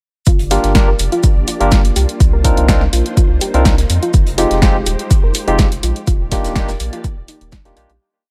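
An overdriven electronic kick drum sits up front, thumping four-on-the-floor through this complete deep house piece, which plays as a drop from start to finish and eases into a fade-out from 5.4 seconds. Beside it, a programmed kit with a punchy, overdriven snare lays down closed and half-open hats and a backbeat, while a very quiet acoustic kit adds a looped, edited breakbeat of hi-hat, shaker and snare from a small, pumping room. A round analog bass plays a dark, syncopated riff with a filter sweep, and a barky tine electric piano heard through a combo amp punches syncopated, close-voiced chord stabs with delay; both pump with the sidechain. Beneath them, a silky vintage string machine holds slow-attack chords with ensemble chorus, and a soft pluck in the background cycles a 12-step sequence that drifts against the bar, coloured by chorus, delay and a moving notch. The chords move from Gm7 through Cm11 and Fm9 to Ebmaj9, and the dry mix carries a late-night mood.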